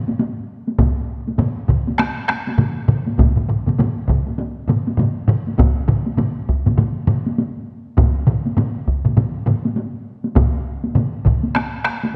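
Powerful and ceremonial, this fragment of a longer Japanese traditional taiko piece moves in a swung 4/4. One taiko ensemble struck with hard sticks opens in a small-room sound at 0.1 s, and at 0.8 s two more hard-stick ensembles, one close and one close, dry and up front, enter together with a solo taiko player whose heavy sticks sound close and dry at the front. A moderate scoring-stage reverb gives the drums a sense of space across the single section.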